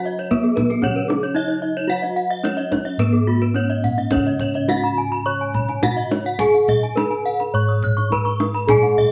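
Uneven beats in a steady four give this short cut of Balinese gamelan a shimmering, brilliant pulse, carried by soft, round bossed gongs struck with padded beaters in the bass and a tight, vintage-sounding kendang played with hard hands. A close, dry, full bronze metallophone with a wooden mallet and paired tuning leads the melody. Two bright metallophones struck with horn mallets add arpeggios over it, and an airy metallophone in the background gives accompaniment, dropping out at 4.1 seconds and returning at 8.7 seconds, all in a moderate stone room as a band playing live.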